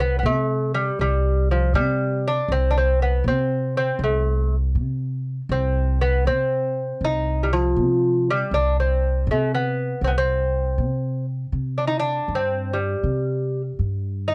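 This Persian modal ensemble piece, cut from a longer performance, carries a longing, melancholic mood at 80 BPM in a straight 6/8, set in the avaz esfahan mode on C. A fingerpicked lute carries the melody from start to finish. Its delicate tone comes from doubled gut strings, some of them octave-doubled, and it moves between F3 and Eb4. Beneath it, a pizzicato upright bass sounds woody and thumpy on gut strings, anchoring the low end between C2 and C3. Both instruments sit up front at an even level in a dry sound with a dark, warm production. At 11.5 seconds the music shifts into a new section, which carries through to the close at 14.3 seconds.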